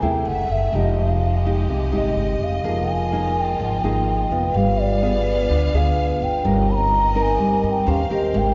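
A mellow, hollow bansuri carries the melody across this smooth, melancholic bossa nova excerpt, its airy bamboo tone shaded with vibrato and a crisp attack. The piece moves at 126 BPM in a straight 4/4 feel in F minor, and the short cut runs 8.5 seconds. A fingerpicked nylon-string guitar with a dark, woody, old-string character sits up front as accompaniment, alongside a pizzicato upright bass whose steel strings give a dark, woody low end. Behind them, a lush symphonic violin section holds sustained, bowed chords at a lower level, expressive and soft in attack with a smooth top. The harmony passes through rich extended chords such as Fm9, Fm11 and G7b9 before landing on Eb13, and a generous church reverb of about 2.5 seconds bathes the whole in a spacious hall sound with a gently dulled top end.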